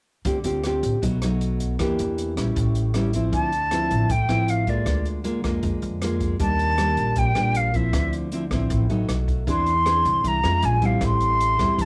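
An open jazz drum kit starts this smooth, intimate bossa nova fragment at 0.2 s, with hi-hat, rim click and a boomy kick heard in a small room through a cassette-tape grain. A moment later, a fingerpicked nylon-string guitar in a classical style sits up front with a warm, tape-coloured tone, moving through Dm7, B7, Em7b5 and A7. Beneath it, a pizzicato upright bass on steel strings sounds woody and growly, thickened by transformer saturation. At 3.3 s a concert flute takes the melody, airy and expressive with vibrato and tongued notes, placed up front yet with a distant quality. The harmony then turns richer, passing through Dm9, Ebmaj7, Eaug7 and Bbm7 before settling on Am7, all wrapped in light reverb with the homespun feel of a cassette recording.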